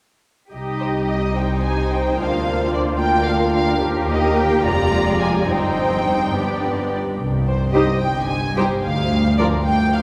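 A quick classical-period movement for string orchestra in C minor, restless and urgent in a straight 6/8 at 72 BPM, with muted violins carrying a lush, veiled melody from 0.8 seconds over a close second violin line, soft-edged violas, background cellos and warm double basses, all con sordino and bathed in a cathedral reverb with a 6.5-second tail, as the harmony moves from C minor through E-flat and F minor to G before returning to C minor and stepping on to B-flat over D.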